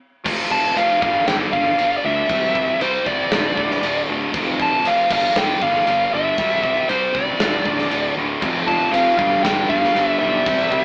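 Driving and menacing, this hard rock excerpt pairs an up-front, high-gain distorted guitar riff with a growly fuzz bass and a gated 80s drum kit of punchy kick and bright cymbals, while a dark, smooth overdriven lead guitar carries the melody on top and a hollow-body semi-hollow guitar joins the riff in the background at 8.4 s, the band captured playing live in one large reverberant room with an AM radio sound.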